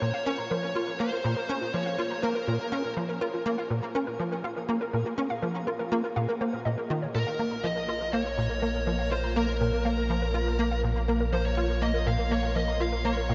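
A dark, distorted high-gain lead guitar carries the melody over a tight, nasal sequencer bass riff, warbling lo-fi pluck arpeggios, a twinkling granular texture fading in from the background, and a deep round sub bass arriving at 7.1 seconds, in this hypnotic, expansive piece of ambient, sequencer-driven space music in Bb minor at 122 BPM, its dreamy mix soaked in huge reverb.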